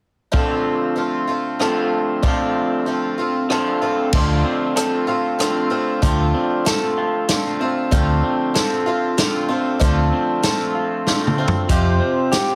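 A shimmering, octave-doubled twelve-string acoustic guitar plays boxy picked accompaniment up front beside a slightly broken-up, lo-fi electric guitar riff and a vintage drum kit with a punchy kick and dark cymbals in this reflective, dusty folk rock and heartland rock excerpt in 3/4, where a round, amped fingered bass enters at 4.1 seconds, a drum fill arrives at 11.1 seconds, and the whole mix carries a heavily compressed radio sound with light reverb.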